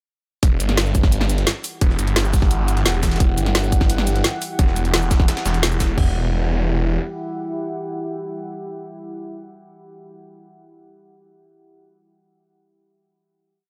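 A straight 4/4 drum and bass groove at 173 BPM drives this short, dark, futuristic piece in E minor, tuned to A4 = 441 Hz, and kicks straight into a drop at 0.4 seconds over an Emadd9 chord. Two layered electronic kits sit up front with a small-room sheen: one supplies a tight kick, floor tom and crash in a broken-beat pattern, while the other carries the tight technical parts with a woody snare, bright closed and open hats and a shaker. Underneath, a very quiet, compressed sampler-style breakbeat loops with edits, its gritty texture and high-tuned snare adding grain. A snarling, distorted sawtooth bass growls low in the E1 to G1 range, bright and aggressive, cutting chopped phrases with overdrive and sidechain pumping. A deep, moody ambient pad of detuned saws with a sub octave fades in with a slow attack and chorus, and it carries the final chord from 6.0 seconds until it trails off at 9.5 seconds. 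The mix is dry and close, with little reverb beyond the pad's own.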